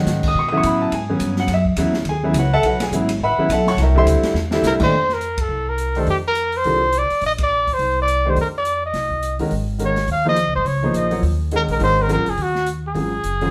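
Searching and open in mood, this modal jazz excerpt swings briskly in four, with a band playing live together in one room and a wet studio reverb around it. A concert grand piano sits up front from the start, intimate and deep in the bass with long sustain and audible action noise, laying down suspended chords beside a woody, thumpy upright bass plucked on gut strings. An acoustic drum kit joins just after, its dark cymbals, medium-tuned snare and boomy kick placed further back, and a drum fill at 4.4 seconds leads toward a new section. Just before it arrives, a mellow trumpet enters at 4.7 seconds as the up-front soloist, punchy and forceful with scooped notes and a smooth top. The band hits accents together at 5.4 and 7.4 seconds as the harmony shifts between sus chords underneath the horn.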